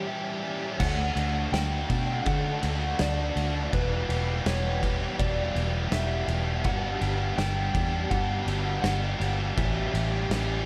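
Dreamy and hazy, this short cut from a longer shoegaze and dream pop rock piece moves in a straight 4/4 pulse. A biting overdriven guitar, picked and double-tracked with subtle chorus, sits up front playing a riff from the very start. Alongside it, a soft, warbling FM synth lead carries the melody in the background, its vintage keys-like tone decaying through chorus and a diffuse ambient delay. At 0.8 seconds a foam-muted, fingered electric bass with a round, amped tone enters up front, together with a loose indie drum kit whose punchy kick, medium-tuned snare and dark crash and ride cymbals sit in a pumping studio room. The harmony moves from a rootless A7 through D, Em7 and Gmaj7 before returning to A7, all of it soaked in a lush hall reverb that gives the mix its dreamlike glow.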